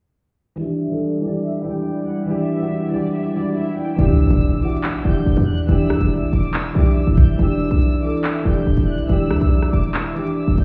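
Muffled as if heard through a wall and touched by a stone-room reverb, this cold, dark drill excerpt at 141 BPM in a half-time E minor feel opens at 0.6 s on an Em7 beneath a filter sweep, with a mellow, intimate grand piano whose action noise is audible and a floating, sul tasto violin section with delay carrying the melody, joined at 1.0 s by a breathy, detuned pad sustaining chords in the background, until an electronic swell rising from 3.3 s and an impact at 4.0 s bring in a knocking, crisp-hatted drill kit and a punchy, tight 808-style bass up front.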